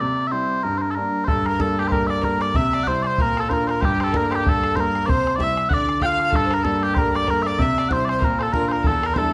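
Celtic folk in the form of a reel, this short passage cut from a longer piece has a wild, spirited mood and a swung, lively drive. Mellow small bagpipes carry the melody from the first moment, their sweet, continuous tone shaded with vibrato and placed up front. A bright concert grand piano accompanies from the start, brilliant and open with deep bass and long sustain, sitting close alongside the pipes. At 1.3 seconds a single bowed fiddle joins with a second line, its tone rich, nasal and earthy with a boxy edge, while a bodhran enters at the same moment with a boomy, open, close and dry sound. The harmony circles around G minor chords with added colour, moving through C, B-flat and D minor, and a moderate recital hall reverb gives the ensemble a sense of space.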